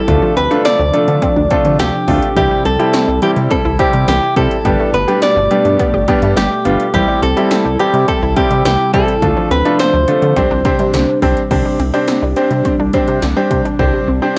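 A clean, picked electric guitar recorded direct sits up front with the melody, its compressed tone carrying the tune until about 11.2 seconds before dropping out. This bright, upbeat synth-pop excerpt in straight 4/4 surrounds it with a brilliant concert grand piano, also up front, whose short sustain and deep bass give the accompaniment a polished presence. Behind them, a swirling phased analog pad holds slow-attack chords through phaser and chorus, while a lush, detuned unison pluck runs arpeggios with tape echo in the background. A glossy, chorused synth bass with tube saturation and 80s electronic pad drums, built from a punchy kick, gated snare, metallic hi-hats and crash cymbal, drive the groove. The harmony moves through Dm7, C and Gadd9 before settling on Csus2, with a new section arriving at 11.5 seconds, and the whole piece carries the character of a home cassette recording in a lightly reverberant space.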